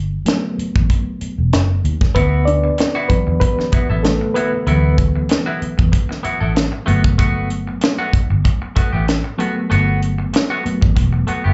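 Lush 1970s-style soul at 95 BPM with a gently swung sixteenth feel, this romantic cut from a longer piece is heard as a live gig through the venue's PA, with club reverb and a dulled top end. A reedy, worn and slightly out-of-tune electric piano carries a solo through its built-in speakers throughout, colored by tremolo, plate reverb and slapback echo over rootless Gmaj9, D69 and Gmaj9 chords. Underneath sit a dark, round, foam-muted fingered bass and a tight, up-front acoustic funk kit with a high-tuned snare, while a bright, compressed hollow-body guitar enters at 2.1 seconds with a clean picked riff touched by slapback echo.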